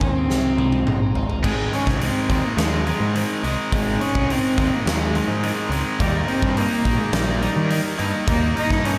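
This fragment of quiet-loud alternative rock moves at 105 BPM in a straight 4/4, with a cathartic, angsty mood. A single warm cello carries the melody with a soft, bowed sul tasto tone and a floating, smooth top, touched by slapback echo. Beneath it, a clean, compressed twelve-string electric guitar plays arpeggios in the background through phaser, slapback and tape echo, while a growling picked bass adds overdriven grit. The acoustic arena drum kit sits up front with a fat snare and punchy kick, and a drum fill from 0.3 to 1.4 seconds launches a bright, high-gain distorted guitar riff that thunders in at 1.4 seconds. The harmony rests on Ab before shifting to Eb at 6.0 seconds, and a lush hall reverb gives the whole mix a big arena sound.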